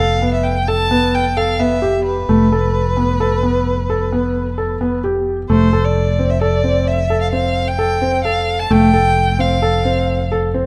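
Contemporary chamber music in an uneven 7/4 at 131 BPM, this playful, shimmering F lydian excerpt sets a single rich violin melody, bowed with vibrato and a focused tone, over felt-muted upright piano arpeggios that sound soft and intimate, with audible action noise. A round, amped fingered electric bass holds F1 beneath them, and all three sit up front until the violin stops at 10.3 seconds, just before the others. The production is dark, with a moderate concert hall reverb, and the harmony moves from Asus2 over F to F at 5.5 seconds.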